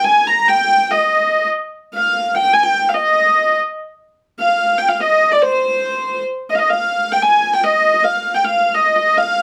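A lone hurdy-gurdy carries this short medieval piece in triple time, its dark, woody tone edged with an airy bow sound as it sits close and up front. The mood is mysterious yet driving, with the music shifting to a new section at 6.7 seconds before this cut from a longer piece ends at 9.4 seconds. A moderate studio reverb lends the single player the feel of a live room.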